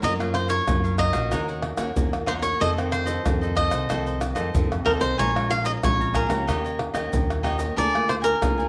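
From the first moment, a bright, up-front cavaquinho carries the melody with a slapback echo, while a second cavaquinho supplies a crisp, picked accompaniment beneath it. This lively, bittersweet samba and choro excerpt moves in a straight four, with a fingerpicked nylon-string guitar adding full-bodied classical chords, the sound of fresh strings and the occasional finger squeak. A woody pizzicato upright bass on steel strings anchors the low end. Egg shaker, surdo, pandeiro and tamborim sit up front in a live room, with a tight surdo and soft hands. The harmony travels from Gbmaj7 through Ebm7 and F7 to Bbm7, Eb7 and Bb7/D, and a moderate echo chamber reverb surrounds the ensemble across the 8.7-second passage.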